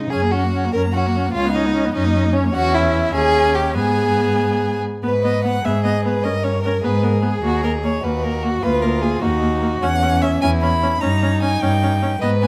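A quick classical-period string quartet movement in G# minor, this lively, cheerful excerpt moves at 100 BPM in a rubato 6/8 and shifts into a new section at 5.0 s. A smooth, even first violin carries the melody up front, reaching B5, while a focused second violin plays an inner line and a rich cello anchors the bass close by. An intense viola sits more distant in the accompaniment, all four bowed with vibrato, in a clear, detailed recording with light reverb.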